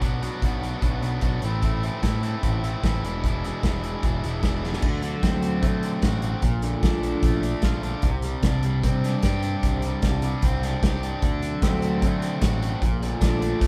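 Bittersweet and restless, this indie rock excerpt drives along at 150 BPM in a straight 4/4, with a crunchy, bright overdriven guitar riff, a growling picked electric bass with overdrive, and a loose acoustic drum kit with a punchy kick sitting up front in a small, pumping room. After a drum fill at 4.6 seconds, a clean electric guitar joins at 4.8 seconds with a second picked riff over chords moving through D7, Bbmaj7 and Csus2. Near the end, at 11.6 seconds, very quiet, hollow group handclaps sound distant in a large room, while the band as a whole plays live in one room under light reverb.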